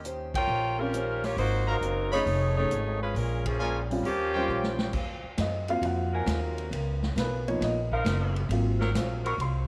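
A swinging 135 BPM big band groove in 4/4 drives this brassy, energetic jazz excerpt in Ab mixolydian, with a woody pizzicato upright bass up front, a distant, roomy drum kit with dark cymbals and a punchy kick, and a boxy picked archtop guitar in the background. A bright, up-front saxophone section carries the melody from 0.4 seconds against clear trumpet section stabs, with band accents and a drum fill before a natural-toned baby grand piano takes a solo from 4.9 seconds over sustained chords from a vintage-flavoured saxophone section. Light reverb and a small room ambience frame the moving harmony of Eb13, Ab13, F7alt, Bbm7 and Db13.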